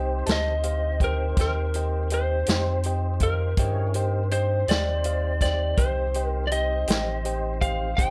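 Smoky and soulful, this slow 12/8 blues fragment sets a clean tine electric piano through a combo amp and a clear tonewheel organ with slow rotary speaker and chorus vibrato above a deep, round, up-front sub bass, while a bright, slightly broken-up, compressed lead guitar and an acoustic vintage drum kit with a tight kick and rolled-off top join at 0.3 seconds, in a light reverb.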